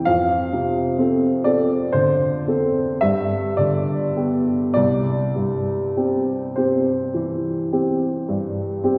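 A lone upright piano opens this romantic nocturne excerpt, its woody, natural tone sitting up front against the generous wash of a concert hall. The mood is serene and dreamy, moving slowly at roughly 33 to 44 beats per minute in 9/8, with a free, rubato feel that lets each phrase breathe. Set in C major, the piano spans from deep bass notes at C2 up to F5, and the harmony rests on Dm7/F before shifting to G at 3.0 seconds and settling on C at 4.8 seconds. The two-second reverb tail gives the instrument a soft halo of space, as if heard in a church or hall. Cut from a longer piece, this nine-second passage feels like a quiet, unhurried moment of reflection.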